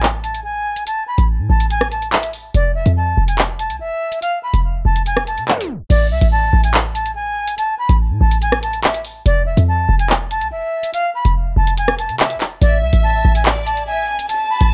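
A dark production with light reverb frames this tense, cold drill excerpt, a half-time hip hop groove cut from a longer piece. Up front, a punchy, tight 808-style bass with a sine body, a noise layer and a fast, decaying attack drives the track beside an electronic drill kit of crash cymbal, handclaps, hi-hat and rim click. From 0.2 seconds a reedy jazz flute carries the melody; it is airy and metallic, with vibrato, a crisp chiffing attack and highs rolled off by a low-pass filter. A tape stop at 5.5 seconds leads into the second section, where the harmony moves through F5 and A5 chords. At 12.6 seconds a bowed studio violin section enters as a second line, smooth and even in its close ensemble sound, trailed by tape echo.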